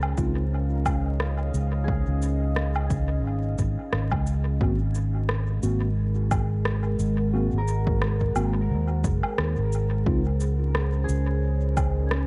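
A round, punchy fingered electric bass sits up front in this hazy, spacious ambient dub fragment at 88 BPM in Ab mixolydian, over a deep, detuned sawtooth pad with chorus and its own reverb holding Dbmaj7 and Ab7 chords, an overdriven electronic kick, a tape-toned woodblock, shaker and rim click with dub echo, background stabs of mellow tine electric piano with dub echo that return at 4.6 s, and a bright, thumb-plucked concert harp whose echoing background arpeggios enter at 1.8 s, all set in a dusky production with vinyl crackle.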